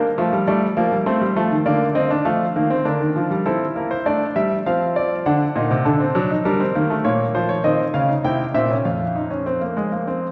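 A wet church reverb and vinyl crackle surround a clear, intimate grand piano that sits up front, its action noise audible. This joyful, stately baroque-style fugue in three voices moves at 100 BPM in 3/4 with a straight feel, spanning F2 to G5, its harmony opening on Bb and passing through Gm and Bbmadd11 before settling on F5. Cut from a longer piece, the solo passage shifts into a new section at 3.5 seconds and runs to 10.3 seconds.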